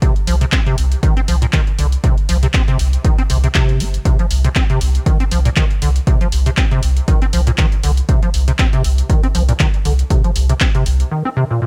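This hypnotic, gritty acid house excerpt moves at 119 BPM in C minor with a 16th-note swing. A punchy, tape-warm electronic kick sits up front, with a small-room character. Analog drum-machine handclaps and hi-hat play beneath it, while a deep, thick triangle sub bass pumps under the sidechain. Over this, a squelchy, hollow square-wave acid riff with a resonant filter pluck runs through tube saturation, chorus and analog delay, and carries on alone in a short break from 11.1 seconds.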